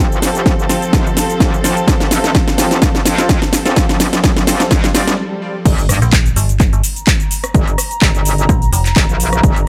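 Bass house at 127 BPM in G minor, aggressive and gritty, opens on an F chord with background bowed strings, a nasal band-passed chord stab under a filter sweep, a warbly lo-fi pad, a metallic wobble bass, overdriven house drums with cracking snare and metallic hats, and a punchy overdriven kick, joined by a very quiet riser from 2.2 seconds, all building through a drum fill and a brief break before the drop at 5.7 seconds lands on G minor with an impact and an up-front digital FM bass entering at 6.0 seconds.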